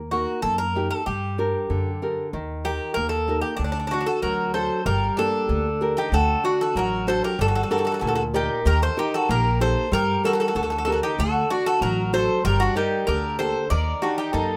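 A straight 2/4 pulse at 95 BPM drives this brooding, cool slice of Greek folk music for a bouzouki band, taken from a longer piece. A pizzicato upright bass with a woody, up-front tone and a small, fingerpicked nylon-string guitar with old strings play throughout, moving through Eb, G minor and D chords. A bright Greek bouzouki carries the melody from 0.1 s, its picked double strings, some octave-doubled, ringing with a metallic edge at the front of the mix. At 3.9 s a second bouzouki enters with a quieter, warm second line, also picked on paired strings beneath the lead. A moderate small-room reverb gives the acoustic ensemble a close, intimate setting.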